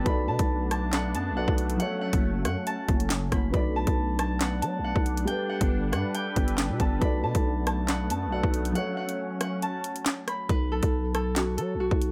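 A drill kit with a hard-clipped kick sits up front with a sharp snare, bright hi-hats, rim clicks and handclaps, driving a cold, menacing half-time groove at 138 BPM in B minor alongside a growling, buzzy 808-style bass with a fast attack. Above them, a fingerpicked Celtic harp rings out the melody over a dark, boxy concert grand piano and an evolving, detuned sawtooth pad with a filter swell, slow attack and chorus, moving through Bm7, F#m and Gadd9. After a break from 8.8 seconds, the piano and pad stop at 10.5 seconds, leaving harp, bass and drums on a B5 chord in this dry excerpt cut from a longer piece.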